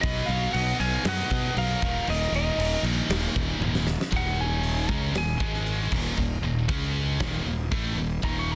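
A driving, heavy hard rock excerpt at 117 BPM in Eb minor opens with a dark, slightly broken-up lead guitar melody through digital delay, shadowed until 2.8 seconds by a background octave-fuzz guitar line, over two picked distorted riff guitars, one scooped and high-gain, the other tight and set back, a growly overdriven fingered bass up front, and a huge arena drum kit with a fat snare, punchy kick and bright cymbals, whose fill at 3.6 seconds leads into a lead guitar solo from 4.1 seconds, all in a dense, heavily limited modern master with small room ambience.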